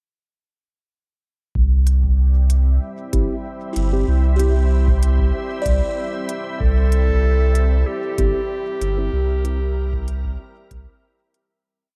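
Hazy and spacious, this short ambient dub piece at 95 BPM in C mixolydian opens its echo-heavy groove at 1.6 seconds with a round, up-front sub bass line and a deep, soft kick in the background, with sparse, crisp hi-hats joining at 1.9 seconds. A detuned organ-like pad with chorus and reverb carries slowly shifting chords, a mellow tine electric piano drops echoing chord stabs, and a buzzing, woody kalimba plays two slow arpeggio loops of unequal length drifting against each other. From 6.6 seconds a clear clarinet with gritty sampler texture and dub echo sings short call phrases before the fade-out that begins at 8.3 seconds.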